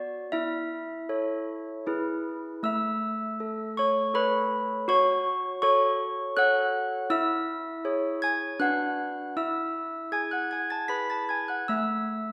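A wet scoring-stage reverb, about 1.7 seconds long, surrounds this recording, and the listener seems to sit further back in the room. This short classical tune for handbells is cut from a longer piece. It has a serene, festive mood, in A major at 79 BPM in a straight 3/4, tuned to A4 = 439 Hz. A solo set of handbells plays throughout, from A3 up to B6, with medium clappers giving a clear, ringing, bell-like tone; the bells themselves carry a boxy small-room colour and sit up front. After a brief opening phrase over A/E and E, a new passage begins at 2.6 seconds, moving through A, F#m, C#m/E, Bm/D and E before settling on an A5 chord at 11.7 seconds.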